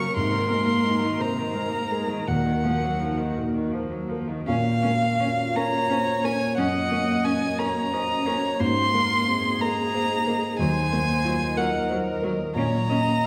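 A wet recital-hall reverb surrounds this reflective, longing fragment of neoclassical piano and strings in 6/8, drifting in rubato at around 54-62 BPM in Bb minor. Up front, a single violin carries the melody with a sul tasto bow, soft attack and light vibrato, over a thick-felt, muted upright piano whose dark, vintage tone supplies the accompaniment. A warm viola adds inner support, while a distant, floating cello sings a pure second line until 13.0 seconds, all backed by an ethereal synth pad in the background, its detuned sawtooth chords softened by chorus, phaser and built-in reverb as the harmony circles from Abadd9 and Ebmadd9 back to Bbm.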